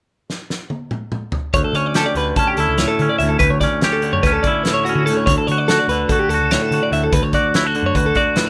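Math rock and midwest emo in a bright, wistful 9/8 at 290 BPM in D major, this short cut opens with a loose indie drum fill, fat snare and punchy kick ringing in a small pumping room, before a bright, compressed twelve-string electric guitar spins clean arpeggios through harmonic tremolo at 1.5 seconds over a Dmaj9, joined by a round, dark hollow-body bass and a clean, twangy electric guitar accompaniment, all under light reverb in a rough home-demo mix.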